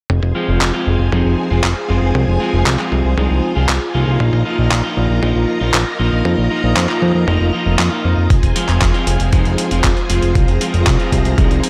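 A steady, straight 4/4 pulse at 117 BPM drives this danceable, bittersweet italo disco excerpt in F minor, with a thumpy, overdriven electronic kick and a gritty sampler-style kit of handclaps and hi-hat joining at 0.6 seconds, the kit's overdriven crunch wrapped in gated reverb. Up front, a fat analog bass blends sawtooth and square waves into a thick, nasal, saturated tone with a fast attack, sustaining low notes that evolve as they hold. Above it, a lush string machine holds soft-attack chords with a sub octave, its vintage ensemble chorus bright yet roughened by 12-bit sampler grit. An electric guitar at the edge of break-up adds picked, scooped stabs, low-pass filtered and trailed by delay. The harmony moves from Fm to Bbsus4 at 4.2 seconds and back to Fm at 8.3 seconds, where a new section begins, all in a dry, close sound.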